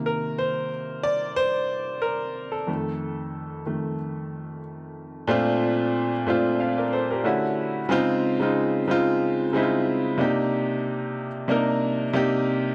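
A dry, close 1970s-style studio sound with light reverb frames this smooth soul passage, cut from a longer piece, in which a bright, worn baby grand piano plays alone throughout, up front and intimate with audible action noise and long sustain, its lightly swung 16ths spanning F2 to F5 as the harmony moves from Cm7 and F7 to Bbmaj7 at 5.3 seconds, then through Dmaj7 and Dbmaj7 before returning to Cm7.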